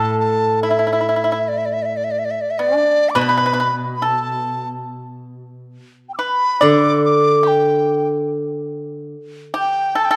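Chinese traditional chamber music with a pastoral, graceful air, moving at a relaxed 71 BPM in 2/4 with a rubato feel in the D zhi mode, in this short excerpt cut from a longer piece. A mellow large dizi carries the melody from D5 to E6 with an airy, buzzing-membrane tone, soft attack and vibrato, while the fingerpicked pipa plays a dry, percussive second line and a steel-string zither adds silvery, ringing accompaniment low in the range until 9.1 s. All three instruments sit up front in a dark production with moderate concert-hall reverb.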